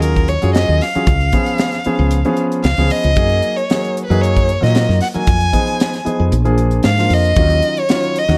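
A dark, lightly reverberant mix frames this nocturnal, intense stretch of electric jazz fusion in Eb minor, cut from a longer piece and moving at 114 BPM in a straight 4/4. A close, expressive bowed violin carries the melody with vibrato and portamento, while a polished baby grand piano accompanies beneath it, both bathed in plate reverb, and a growly, round fretless electric bass sits up front through lush chorus. A crisp fusion drum kit with a high-tuned snare, punchy kick and hi-hat plays through all 8.4 seconds as the chords travel from Ebm11 through Gb69 and Bb7 back to Ebm9.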